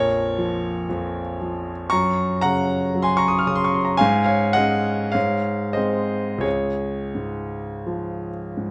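Flexible rubato over a slow 4/4 pulse carries this tender, serene romantic nocturne, a brief 8.7-second passage from a longer piece for solo concert grand piano, which sits up front with an intimate, polished tone, deep bass, long sustain and audible action noise, moving from Bbm through Gb and Ab to a settled Db within a moderate large-studio reverb.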